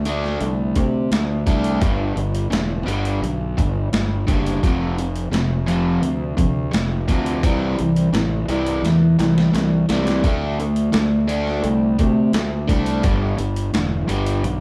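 A straight 4/4 groove at 86 BPM drives this swaggering classic rock excerpt, carried by a gritty, pitched-down, sampler-style drum kit with a thumpy kick and a high-tuned snare, which plays a fill from 8.8 to 10.2 seconds. Up front, a bright, double-tracked overdriven electric guitar picks a riff through D5, G5, F5 and C, while a round, punchy fingered bass with fuzz holds down the low end. The band sounds as if it is playing live together in a large studio room, with a moderate reverb around the parts.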